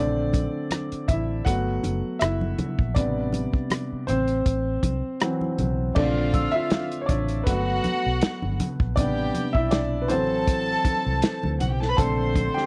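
A dry, close, 1970s-style studio sound frames this bittersweet, cinematic slice of lush soul, with a boxy grand piano up front carrying the chords and solo passages throughout while a round, foam-muted electric bass and a muffled, lo-fi drum kit with dark cymbals, rim click and a tight kick sit beneath, dusted by very quiet, thin-skinned congas. At 6.0 seconds a reedy, gut-string violin section with light vibrato joins as a second line, and from 6.3 seconds a delicate, bell-like celesta adds sweet texture in the background until 11.8 seconds. The gentle 16th-note swing and rich seventh chords give the groove a yearning, cinematic glow.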